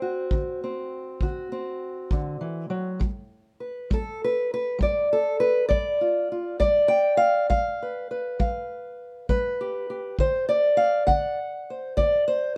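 A slow 12/8 pulse with a straight feel and a laid-back, gritty mood carries this short cut from a longer acoustic country blues piece. A fingerpicked steel-string parlour guitar takes the melody up front, warm and ranging from D3 to G5 over D7 and G7 chords. A dark, smooth kick drum with a tight, rolled-off top enters at 0.3 seconds and also sits up front, with light reverb giving a small studio-room feel.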